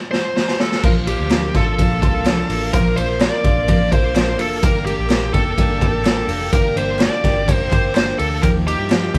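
This excerpt of jangly indie pop opens with a raw garage drum fill and a distorted, bluesy lead guitar, both heard from the first moment, the drums gritty and boomy in the kick with a rolled-off top and sitting up front. At 0.8 s the full band lands on Bb major at 126 BPM in a straight 4/4, with a dark, foam-muted electric bass giving round, punchy low notes, a full-bodied steel-string acoustic guitar picking in the background, and a bright, twangy clean electric guitar tracing arpeggios beneath. A soft, silky string machine with a slow attack and ensemble chorus joins at 1.5 s with sustained chords, and very quiet, hollow group handclaps appear at 1.3 s. The lead guitar carries the melody in a compact range between G4 and D5 over a chord movement from Bb to Gm and on to Ebadd9. The band sounds like it is playing live together in one room, with moderate reverb and a vinyl crackle lending the youthful energy a nostalgic, vintage glow.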